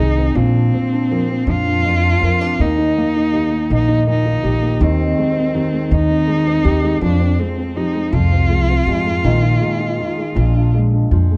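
A bowed cello sings the melody up front with smooth vibrato, over thumb-plucked nylon-string guitar, pizzicato upright bass on woody gut strings, and soft arpeggios from a felt-muted upright piano in the background. This nostalgic, intimate folk-pop ballad in a steady 6/8 moves from Bbadd9 through Eb, Abmaj7/Eb and Fmadd9 before resting on Bb7sus4 and Bb7. The full-bodied guitar, thumpy bass and mellow piano carry on after the cello drops out at 10.7 seconds, all in a dark production with light reverb, in this passage cut from a longer piece.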